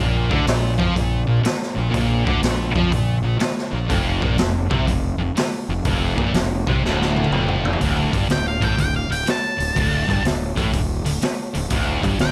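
A raw, nearly dry recording with a faint mains hum opens this heavy, smoky slice of blues rock power-trio music with a southern rock streak, swinging at 123 BPM in 4/4 in D minor. A bright, double-tracked fuzz guitar sits up front with a thick picked riff in its low register, moving through Bb5, F5 and D5 chords, while a growly, overdriven fingered bass adds weight underneath. From 0.3 seconds a gritty, saturated garage drum kit joins in, recorded in a small room with a boomy kick, a medium-tuned snare and a rolled-off top, and it plays a fill from 6.8 to 7.8 seconds that leads into the next section. At 8.3 seconds a dark octave-fuzz lead guitar enters up front with a high melody between F5 and A5, carrying the piece to the end of this cut from a longer performance.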